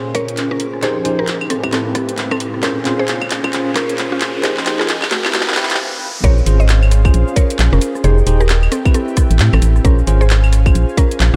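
A soft-edged analog pad, detuned and smooth, opens this soulful, skippy two-step garage cut in Bb minor at 133 BPM, joined by bright, bell-like tine electric piano stabs and a very quiet, blurred granular cloud pad. A woody, round mallet-like synth pluck carries the melody with chorus, 12-bit sampler grit and a diffuse ambient delay, while a tight, up-front electronic kick and a garage kit of warm hats, handclaps, rim clicks, claves and cabasa swing on the 16ths. Through the build-up, a filter sweep moves across the electric piano, a faint electronic riser plays beneath, and a drum fill runs until a brief stop at 5.8 seconds. The drop lands at 6.2 seconds, where a hollow, dark, organ-like FM bass enters up front with sidechain pumping, matching the pumping of the pad. The chords cycle through Bbm7, Fm7 and Am7 in a light reverb, and this excerpt is cut from a longer piece.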